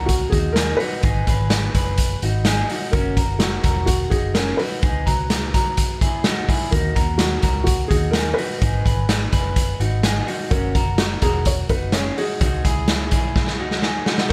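Wistful and bittersweet, this jangly indie pop excerpt pairs a soft, felt-muted upright piano melody with twangy, slightly broken-up electric guitar arpeggios and a round, foam-muted picked bass, while a saturated, gritty garage drum kit sits up front in a bright stone room under light reverb, rounding off with a drum fill from 13.4 s before a very quiet overdriven guitar appears at 14.3 s.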